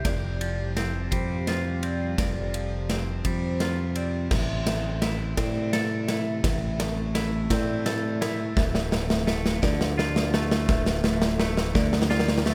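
Melancholic and cinematic, this post-rock passage moves at a slow 56 BPM in a straight 6/8 in D minor, cut from a longer piece and built entirely as a build-up with a drum fill running through its 12.5 seconds. A big acoustic rock kit sits up front, its punchy kick, medium-tuned snare, ride and crash cymbals filling the studio room. A twangy, clean electric guitar picks arpeggios colored by phaser and slapback echo, while a metallic, ringing vibraphone adds its own arpeggios high in the background, shimmering with slow motor vibrato and slapback echo. A bright, growly fingered electric bass enters at 0.1 s with a direct tone. Beneath it all, a deep, moody pad of detuned sawtooth and sine layers with a sub octave holds sustained chords very quietly, its slow attack, chorus and long release adding a dark haze as the harmony moves from Fsus2 to Am at 4.3 s and Dm at 8.6 s, all set in a small room ambience.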